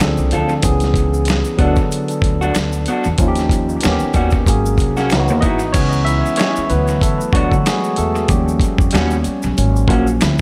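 Smooth and sultry, this brief neo-soul R&B excerpt at 94 BPM in C# phrygian swings lightly over a gritty, compressed sampler-style drum kit with a thumpy kick and a woody pizzicato upright bass, while a barky, lightly overdriven tine electric piano with dub echo sits up front and takes a solo from 5.7 seconds, a slightly broken-up, lo-fi electric guitar with spring reverb carries a second line, and close, dry finger snaps and egg shaker echo softly in the background of an echo-heavy mix moving through chords like C#m7, D6 and D#7alt.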